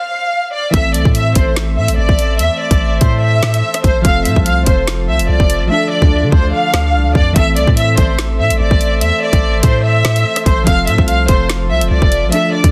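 A lush, bowed violin section carries the melody with vibrato and portamento, its lines colored by digital delay. It plays alone for the first 0.7 seconds before the rest of this dark, cold drill piece arrives at 145 BPM in a half-time feel, in A minor. Beneath it, warbling, detuned lo-fi synth keys with chorus, a classical-style brass ensemble holding sustained chords, and a deep, sine-toned 808-style bass move through Am, F and Dm, while an electronic drill kit sits up front with a hard-clipped kick, woody snare, rim clicks and hi-hats that drop out between 5.7 and 7.4 seconds, all within a dense, heavily limited master and a digital ambience.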